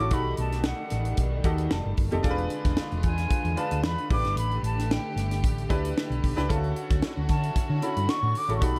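A dark, lightly reverberant production carries this breezy, urban 1980s jazz-funk pop excerpt at 113 BPM in D major, where a pure, hollow concert flute sings the melody over bright grand piano accompaniment with analog chorus and a fill at 1.2 seconds, lush bowed studio strings sustain chords beneath, a round, punchy hollow-body bass sits up front, and a tight funk kit with a high-tuned snare joins at 0.1 seconds as the harmony moves from B7b13 through F9 and E7b9 to A7sus4 before settling on Dmaj7.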